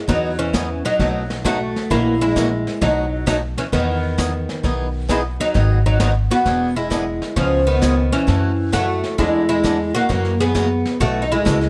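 Light reverb surrounds this short country swing fragment, cut from a longer piece, with the plectrum-plucked oud sitting up front over a down-home, playful groove. At 132 BPM in 4/4 with a swung eighth-note feel, the tune moves through E major, opening on Emaj9 and passing through B7, G#m7, C#7 and F#m7 before pausing on an unresolved B7sus4 at 11.0 seconds. The fretless oud carries the melody with a bright, woody tone from its double strings. Beneath it, a boxy picked acoustic guitar supplies swing accompaniment, with a bright tone and audible finger squeak. The pizzicato upright bass adds a growly, thumpy low end on steel strings, while a vintage kit played with brushes in a studio room keeps time on snare, hi-hat and a tight kick, its sound dark and smooth with a medium-tuned snare.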